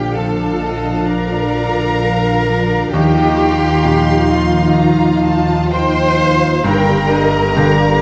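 Cinematic, hopeful and moving, this rubato passage sets a lush violin section melody over a second violin line, pure flute, clear clarinet and cor anglais, with bright grand piano, viola section, very quiet dark French horns and ringing harp arpeggios around an up-front cello section and a double bass section, a barely audible timpani touch in the first 0.6 seconds, and a wet scoring-stage reverb.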